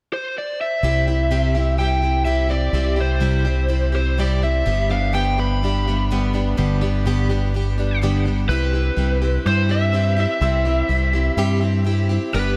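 Nostalgic and hopeful, this short rock excerpt moves at 125 BPM in a straight 4/4 feel in C major, cut from a longer piece. A lead guitar through a small cranked amp opens the track at 0.1 seconds, carrying the melody with an overdriven, picked tone and a touch of tape echo. At 0.8 seconds a picked plugged-in steel-string acoustic guitar joins with a boxy accompaniment under a subtle chorus, while a deep dub fingered electric bass enters alongside it, dark, round and punchy, sitting prominently in the mix. The harmony steps from C to G and back to C at 8.5 seconds, where the music moves into a new section. All three parts sit up front in a light studio reverb.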